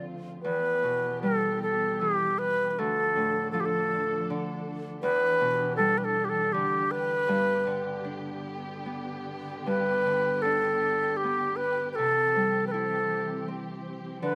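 A bright baroque flute carries the melody up front, its airy wooden tone, straight and crisply attacked, moving between G4 and B4 with a short slapback echo trailing each phrase. This Celtic slow air, cut from a longer piece, has a haunting, longing mood, unfolding in 3/4 at about 78 BPM with uneven, rubato beats. Beneath the flute, a fingerpicked Celtic harp rings out in acoustic accompaniment, reaching from D2 to E4. A muted studio string section, bowed con sordino, adds dark, veiled sustained chords with vibrato and a soft, lush ensemble body. The harmony drifts from Em through Dm, Em7 and G before settling on C at 12.0 seconds, and the whole passage sounds dry and open-air, with little reverb and an absence of room sound.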